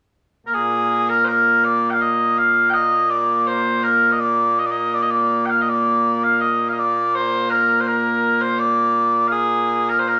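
In a straight 3/4 at 82 BPM, this proud, ceremonial Scottish pipe tune in Bb mixolydian, cut from a longer piece, features mellow small bagpipes playing solo and up front from 0.5 to 10.2 s, their sweet, continuous tone carrying vibrato across a range from Bb2 to G5, all set in a wet large studio reverb with the small room ambience of a live take.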